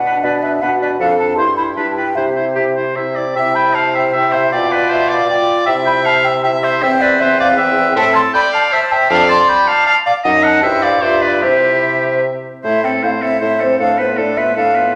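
Spirited and graceful, this quick classical-period movement for wind quintet in C major moves at 156 BPM in a straight 3/4. A hollow, pure-toned concert flute with vibrato and a soft attack carries the melody, while an oboe with light vibrato sings a second line and a bright, present clarinet and a clear French horn fill in the accompaniment. Beneath them, a close-miked, mellow bassoon anchors the bass, all set in a wet recital-hall reverb in this excerpt cut from a longer piece.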